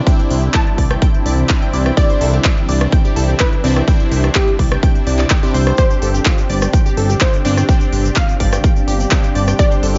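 Set in a digital ambience that rolls off the highest treble, this uplifting, hopeful progressive house excerpt at 126 BPM in 4/4 rides on a punchy, up-front, tape-warmed electronic kick and a big-room dance drum kit of crisp hats, handclaps and rim clicks, beneath a fat, sidechain-pumped analog bass, cassette-tinged supersaw stabs, a glassy, chorused wavetable pluck arpeggio, a bright unison pluck melody shadowed by a very quiet, mellow soft synth bell, and a shimmering ambient pad holding Cadd9 before Gsus4, with a grainy egg shaker joining at 5.8 s.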